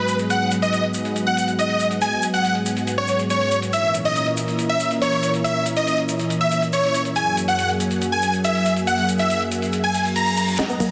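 A huge, thick supersaw lead carries the melody up front through this soaring, euphoric uplifting trance clip at 140 BPM, pumping against the sidechain with low-pass filtering and delay, over a lush, warbling unison pad whose chorused chords move from G#m7 to A#dim to F#add9. Beneath them sit a background techno kit of congas, metallic hats and a cracking snare, plus a grainy, saturated egg shaker, all bathed in a huge ambient reverb within a dense, heavily limited master. A reverse cymbal and riser build from 9.9 seconds, and a drum fill at 10.6 seconds brings brief touches of a round vintage analog pluck arpeggio and a very quiet, punchy electronic kick.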